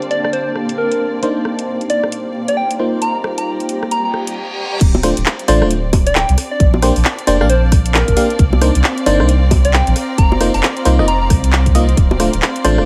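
A sunny, soulful two-step garage excerpt opens with glassy, bell-like FM electric piano stabs, a gentle keys-like synth lead melody with tape echo, sustained chords from a lush, vibrato-rich violin section and a blurred, evolving granular cloud pad, the strings and pad both pumping to the sidechain over a tape-warm swung garage kit of hi-hat, handclaps, rim clicks, bongos and crash, all set in vinyl crackle. A filter sweep builds until a reverse cymbal enters at 4.1 seconds and the music stops at 4.4 seconds. At 4.8 seconds the drop lands with a punchy, layered electronic kick and a deep, round dub sub bass pushed up front beneath the soulful chord changes.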